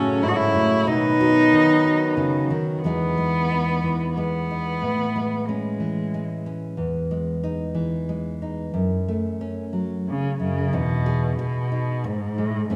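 Pastoral and hopeful, this short fragment of an acoustic folk piece moves in an unhurried 3/4 at 91 BPM in E major. A rich, bowed cello carries the melody up front with expressive vibrato and portamento, while a fingerpicked nylon-string guitar gives bright, full-bodied classical accompaniment throughout. At the opening, a cup-muted trumpet adds a veiled, mellow second line in a soft classical style until 2.5 seconds, and a reedy, breathing harmonium sustains chords in the background over the F#m to B progression. The harmony then settles into Emaj7 and Amaj7 colours, with the cello stepping away at 6.5 seconds before returning at 10.1 seconds, just ahead of the closing Emaj7 passage. A generous scoring-stage reverb with a 1.8-second decay surrounds the ensemble.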